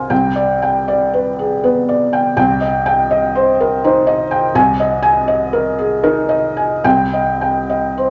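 Rubato phrasing and uneven beats in 3/4 at 80 BPM give this short excerpt of neoclassical minimalist piano a breathing, intimate feel in C minor, tuned to A4 = 441 Hz. A felt-muted upright piano plays solo throughout, soft and mellow and placed up front, spanning C2 to Ab5 as the harmony moves from G/C to Cm, then Abadd9/C at 4.5 seconds before settling back on Cm. A wet, large studio reverb surrounds the melancholic passage, which is cut from a longer piece.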